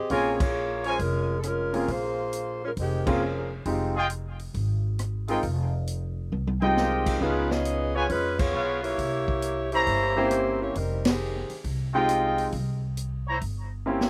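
A mellow, vibrato-laden saxophone section opens the melody in this dramatic, swinging F minor big band excerpt at 135 BPM, joined at 0.1 seconds by a bright upright piano with audible action noise and slapback echo, distant trumpet stabs, a woody, growly pizzicato upright bass and a punchy, high-tuned swing drum kit, with band accents punctuating the Bbm7 to C7b9 changes, the saxophones returning at 6.8 seconds after a drum fill, and the dry, roomless sound keeping most parts up front.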